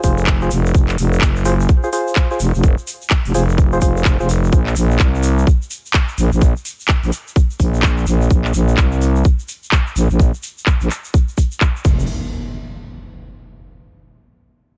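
A swaggering, bouncy bass house excerpt at 127 BPM opens all at once, with a hollow, dark organ stab pumping against the sidechain through chorus and digital delay over Fm, a thick, growling FM bass under a filter sweep, a tight, tape-warm kick up front, and a house kit of handclaps, crash and metallic hi-hats, low-pass filtered and re-recorded in a small room. A grainy, bright tube shaker and a brief electronic downlifter complete the opening, all driven by a 62% swing on the 16ths. The organ stab stops at 4.3 seconds, shortly before the harmony moves to Bbsus2, and the groove rides on until an impact lands at 11.8 seconds, carrying a dry, close mix into a short final section.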